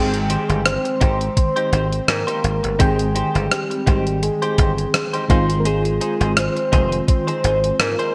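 This short fragment of romantic, nostalgic 1980s-style pop opens with a soft, octave-layered synth lead carrying the melody over an FM electric piano, a clean electric guitar riff and a thumbed slap bass, with a gated digital drum machine arriving at 0.1 seconds. The tempo sits at an unhurried 84 BPM in 4/4 with a light 16th-note swing, and the harmony rests on Abmaj7 before moving to Fm7/Ab at 5.3 seconds. The lead is round and dark, blending triangle, sawtooth and sine tones with a sub octave, and it sustains with vibrato through chorus, phaser and digital delay. Beneath it the electric piano rings mellow and decaying after a fast attack, its tremolo colored by phaser. The direct-recorded guitar sounds compressed and picked, shimmering in lush chorus, while the foam-muted slap bass sits up front, bright and punchy, and drops out at 7.9 seconds. The drum machine's thumpy kick, hi-hat and rim click come forward through gated reverb, all set in a moderate digital hall ambience with a bright period production.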